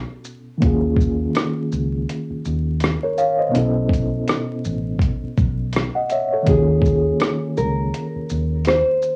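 A reedy, mellow electric piano with fast tremolo and a cassette-tape haze provides the accompaniment in this hazy, nostalgic lo-fi hip hop excerpt at 82 BPM with a swung 16th-note feel, moving between B9sus4 and Eb9sus4 over a gritty, overdriven sampler-style drum kit of thumpy kick, rim click, hi-hat and shaker, a dark, round, foam-muted fingered electric bass, and a small, thumb-plucked nylon-string guitar melody with tape echo that enters at 6.5 s, framed by vinyl crackle and small-room ambience.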